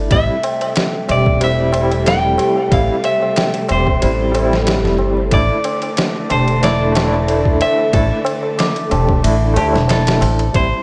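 A woody, pizzicato upright bass sits up front in this hypnotic, dark trip hop excerpt, moving at 92 BPM in 4/4 with a light 16th-note swing. Beneath it, a gritty, pitched-down sampler-style drum kit pairs a thumpy kick and medium-tuned snare with ride cymbal, overdriven and compressed and set in studio reverb, while a low-tuned, ringing tabla sits close and dry in the background. A barky, bright tine electric piano carries the accompaniment through tremolo, a low-pass filter and tape echo, and a clean, picked electric guitar plays the melody, its tone warm and trailed by tape echo. Further back, a bell-like, delicate celesta spins sweet arpeggios through its own tape echo, and a lush, bowed string section holds smooth sustained chords with vibrato. The harmony rests on Am7 before shifting to Dsus2 at 5.3 seconds, all within a small room ambience and light reverb, as this fragment is cut from a longer piece.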